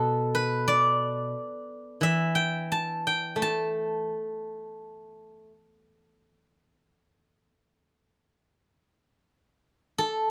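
Chinese traditional solo plucked-string music, longing and contemplative, unfolding in a free, rubato feel. A steel-string zither plays alone, its bright, silvery tone ringing out up front from 0.0 to 5.5 seconds and returning briefly at 10.0 seconds, spanning from low to high in its range. Close, detailed microphones and little reverb capture every fingerpicked note in this short excerpt cut from a longer piece.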